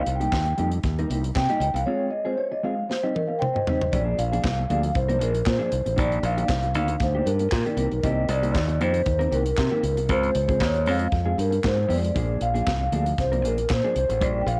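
Danceable and glamorous, this short disco cut from a longer piece rides a straight groove with a homemade cassette character. A vibraphone played with soft mallets carries the melody, its ringing, metallic tone smoothed by a fast motor vibrato and a touch of tape echo. The track opens with a vibraphone solo, and a drum fill from 2.9 to 3.9 seconds leads into the second section. Underneath, a mellow electric guitar adds dark, clean, compressed accompaniment. A bright, fingered electric bass sits direct and up front, and a tight funk kit of kick, medium-tuned snare, hi-hat, toms and handclaps sounds dry yet airy and polished. The harmony cycles through lush chords such as Cm7, Dbmaj7 and Bb7, all set in light reverb and small room ambience that recall a cozy home recording on cassette.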